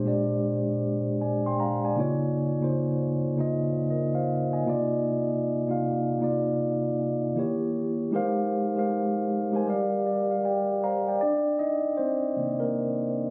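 R&B with a sultry, smooth mood, carried entirely by a single tine electric piano at an unhurried pace with a swung sixteenth-note feel. The instrument's tone is mellow and clean, placed up front and direct, ranging from its low register up into its upper keys. The harmony drifts through lush extended chords such as Bb13, Cm11, Eb7b9 and Abmaj13, giving the passage a late-night, jazz-tinged color. A fill arrives at 9.7 seconds, and from 11.2 seconds the piano moves into a short solo over a Cm9 chord that runs until the clip ends at 13.3 seconds. The sound carries a moderate small-room reverb and the character of a phone recording made in the room, and it is cut from a longer piece.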